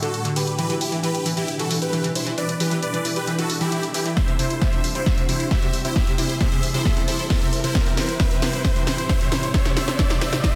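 A huge, detuned supersaw lead carries the melody over a dark, ethereal pad and a round analog pluck arpeggio, all pumping to the sidechain, joined by an overdriven analog drum machine whose hi-hats pump along with its snare in this euphoric, bittersweet uplifting trance build-up. The supersaw's phaser and digital delay and the pluck's chorus and delay sparkle against the pad's shimmering, granular haze, while a background riser enters at 0.2 seconds. At 4.2 seconds a punchy, tape-toned electronic kick arrives up front with a drum fill, all set in a concert-hall reverb and a dense, heavily limited master.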